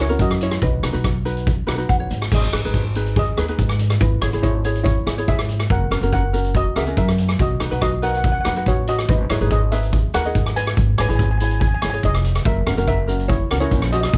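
A thumpy, woody upright bass sits up front in this carefree, sunny calypso cut from a longer piece, its pizzicato gut strings moving in a low register at a brisk 142 BPM in straight 4/4. The street-band drum kit comes in at 0.1 seconds, also up front, with a boomy kick, rim clicks, hi-hat and dark crash cymbals whose rolled-off top gives the small-room kit a mellow, mid-forward sound. Over this, a double seconds steel pan carries the melody with a metallic, shimmering tone that stays smooth under hard rubber sticks. A light, fingerpicked acoustic ukulele fills out the accompaniment and adds a short fill from 1.7 to 2.3 seconds, while a grainy egg shaker sits in the background. The harmony cycles through F#7, B, G#m and C#m7 over a G# bass, all set in a light reverb.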